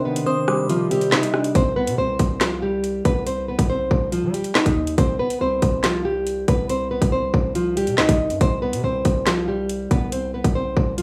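A rough home-demo mix with studio reverb frames this dark, tense half-time drill hip hop excerpt, where a bright, fingerpicked nylon-string guitar carries the melody through a low-pass filter and tape echo over an up-front electronic drum kit of hard-clipped kick, woody snare, metallic hi-hats, handclaps and rim clicks, while a clean, compressed electric guitar, a distant, very quiet classical-style brass section with light vibrato and a brief crystalline FM bell with chorus and tape echo open the piece before a punchy, heavy sine-based 808 bass arrives at 1.6 seconds.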